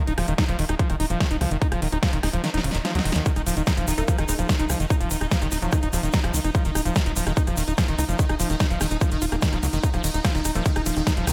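Psychedelic trance cut from a longer piece, alien and driving at 146 BPM in Eb minor, where a screaming, squelchy distorted acid line with chorus, sidechain pumping and diffuse ambient delay rides over a tight, dark sequencer bass, a punchy up-front kick that drops out from 2.4 to 3.3 seconds for a drum fill on a big-room kit with a huge snare and metallic hats, a very quiet electronic swell, a grainy tube shaker, a pulsing gated texture holding Eb4 in the background from 3.6 seconds, and a very quiet, juicy resonant blip pluck with ring modulation and phaser, all in light digital ambience.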